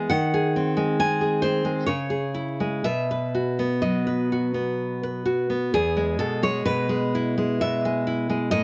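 A fingerpicked nylon-string guitar plays alone, its fresh strings giving a full-bodied, up-front tone with audible finger squeak, in a tender, nostalgic romantic piece cut from a longer work. The playing moves in a three-beat metre with rubato and uneven beats, passing through G#7/D#, C#m and B before settling on E as a new section begins at 5.7 seconds. Close, detailed microphones and little reverb keep the sound intimate, with a layer of vinyl crackle beneath it.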